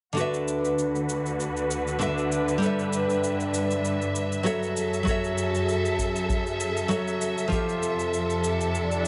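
A bright, fingerpicked nylon-string guitar with tape echo carries the accompaniment in this smooth, blissful sunset chillout piece at 98 BPM in D major, beside a bowed studio string section with vibrato and portamento under a filter sweep, a layered electronic cabasa in studio reverb, a deep analog kick drum that enters at 5.1 s and stops at 7.6 s, and an electronic swell at 8.8 s, while the chords move from D6 through G6 and F#m7 to Fmaj7.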